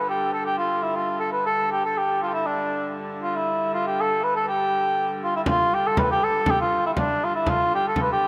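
A dark cor anglais with light vibrato carries the festive, rustic melody of this medieval dance excerpt at 120 BPM in G mixolydian, up front over a biting, earthy hurdy-gurdy drone, with a deep frame drum played by hard hands joining at 5.5 s, all set in a lush hall reverb with a rough home demo mix.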